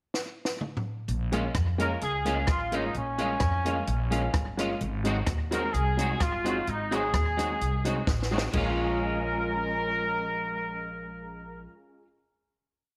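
Ska at 129 BPM in Bb minor, this short, complete piece feels energetic and mischievous. It opens with a drum fill on a compact cocktail kit before the bass enters at 1.1 seconds, followed by guitar and piano at 1.3 seconds and horns at 1.8 seconds. The harmony sits on a Bbm7 that moves to Ab7 and returns to Bbm7 for a held final chord from 8.5 seconds. The dry, up-front kit has a punchy kick, a high-tuned snare and dark cymbals, playing a ska beat with a side-stick backbeat and touched by slapback echo, with a second fill leading into the closing chord. A gut-strung upright bass walks with a woody, thumpy tone, sliding and using chromatic approach notes. A slightly broken-up, twangy electric guitar with ensemble chorus and slapback echo chops the off-beats alongside a clear upright piano doing the same. Over this, a tight, vintage-sounding horn section carries a motif-based melody with light vibrato and slapback echo, all set in a small room with light reverb.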